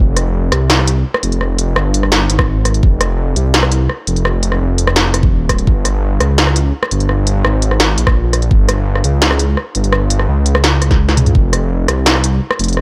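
Dry, this tense, cinematic half-time drum and bass excerpt opens on a deep, rumbling, detuned saw bass sitting up front, joined at 0.2 seconds by an industrial electronic kit of clanging snare, smooth hats, rim clicks and toms, while a layered, knocking electronic kick lands in short hits from 2.4 seconds and a drum fill arrives at 11.1 seconds.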